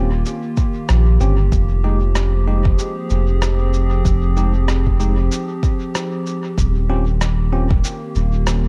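Hazy and meditative, this short ambient dub excerpt sits at 95 BPM in F minor with a gentle 16th-note swing, drifting from Eb13 to Fmadd9 and back to Eb13 at 6.6 seconds. A warbling, detuned tape-like pad holds dark, nostalgic chords through chorus and its own reverb, while a bright, clean tine electric piano drops stabs into dub echo and a round, up-front sub bass anchors everything with tube-saturated depth. Muffled, pitched-down electronic cabasa and rim clicks arrive at 0.3 seconds trailing dub echo, joined at 0.6 seconds by a deep, layered electronic kick, all set in a digital ambience of an echo-heavy mix.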